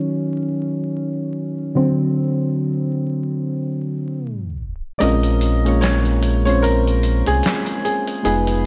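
Melancholic and reflective, this lo-fi hip hop excerpt sits at 74 BPM in Bb minor with a swung sixteenth-note feel, wrapped in light reverb and vinyl crackle. Soft, round synth keys with an electric-piano character open the track alone, their dark, full-bodied tone coloured by chorus and cassette tape and moving through Ebm7 and D7 before a tape stop drags the sound down between 4.2 and 5.0 seconds. At 5.0 seconds the music settles onto Bbm9 as a clear upright piano enters with a short melody, its woody, intimate tone carrying audible action noise. A deep sine sub bass with an octave arrives at the same moment, sitting up front with a sustained, fast-attack body. Beneath them a dusty, gritty sampler-style kit of handclaps, hi-hat and a fat snare plays with the kick muted, its compressed, tape-softened sound re-recorded in a large room.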